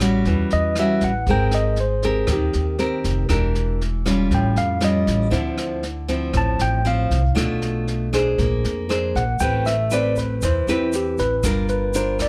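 A fingerpicked nylon-string guitar with fresh strings and audible finger squeak opens this romantic, sophisticated bossa nova excerpt, sitting up front alongside a woody pizzicato upright bass and a jazz brush kit that sounds distant and roomy, with a boomy kick, rim clicks and a medium-tuned snare. At 0.5 seconds a clean tine electric piano, heard through its built-in speakers, enters to carry the melody as a solo across the whole passage. The straight groove moves through rich, shifting harmony, from an opening A6 through Abmaj9, Em7b5 and an augmented dominant to Dm9, Bb9 and Am9 before settling on Gm7. At 9.4 seconds a grainy, bright, band-limited tube shaker with a vintage character slips in quietly in the background. The overall sound is dry, with little reverb, and the fragment feels lifted from a longer piece.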